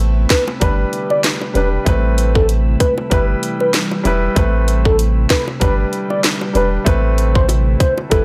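A swung 96 BPM dancehall groove in 4/4 and A minor drives this sultry, tough excerpt, with an electronic kit of tight kick, sharp snare, rim click and hats entering at 0.3 seconds, set up front in a large room, while a punchy, deep sine sub bass with a pitch-drop attack anchors the low end and round, low-tuned bongos sit close and dry in the background. A polished grand piano carries the chords, which center on Amadd9, G and Em/G, over a glassy, warbling vintage FM pad that sits in the background, soaked in ensemble chorus and its own reverb. Over it all, a velvety, wave-folded synth lead with chorus and vibrato sings a smooth melody in a narrow upper range, all framed by digital ambience.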